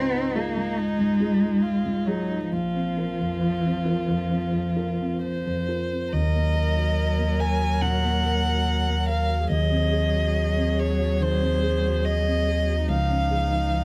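Neoclassical piano and strings in a melancholic, reflective mood, moving in a rubato 4/4 through this short excerpt cut from a longer piece. A solo violin carries the melody up front, its bowed tone rich, smooth and even with vibrato, while a single cello sings a second line beneath it with soft attacks, portamento and expressive vibrato. A dark concert grand piano accompanies throughout, mellow and deep in the bass, under harmonies that drift from Dbadd9 to Bbsus2 in the opening passage. At 6.1 seconds the music shifts toward Ebm and Ab7/Eb as a close, intimate viola joins with a soft, gliding accompaniment and a full sub bass, built from sine and triangle tones with a fast attack, sustains beneath the ensemble. A light reverb gives the strings and piano a gentle sense of space before the harmony settles back on Dbadd9 at 12.9 seconds.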